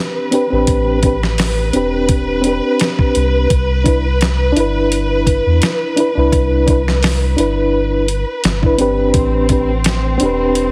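Heavily compressed into a radio-like sound with light reverb, this brooding, smoky trip hop excerpt in A minor moves at 85 BPM with a slight 16th-note swing, as a reedy, up-front electric piano with tremolo and tape echo accompanies and a lush bowed string section carrying vibrato and 12-bit sampler grit sustains Am11 and Cmaj9 chords, a gritty sampler-style drum kit with thumpy kick, fat snare and hi-hat enters at 0.3 seconds in studio reverb, and a round, deep dub sub bass joins at 0.5 seconds.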